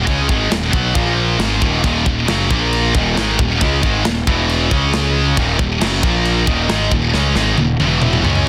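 Dry and densely limited, this short cut from a longer heavy metal piece charges along with an epic, aggressive edge at 136 BPM in a straight 4/4, grinding through Eb phrygian over Ebm, Bb5, Eb5, E5 and Db5 chords. Two bright, high-gain distorted electric guitars pick out the riff, one up front and one set further back, while a growly, fuzz-soaked picked bass sits forward beneath them. A tight acoustic kit with a medium-tuned snare, a softly clipped kick and a warm, rolled-off top drives crash, kick, snare and toms, closing with a fill from 7.1 s to 8.5 s.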